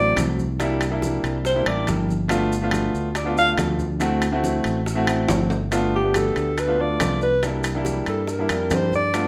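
A wet, roomy studio sound frames this sunny, sophisticated slice of Afro-Cuban jazz, with a mellow alto saxophone soloing up front in smooth, vibrato-laden jazz style over an intimate grand piano whose action noise and long sustain come through naturally. A bright, growly fingered electric bass punches beneath them, and at 0.2 seconds the percussion joins: thick-skinned, low-tuned congas in the background, very quiet round bongos, grainy maracas and ringing, dry metal-shelled timbales. A drum fill at 5.3 seconds leads into a repeat of the opening section at 5.7 seconds.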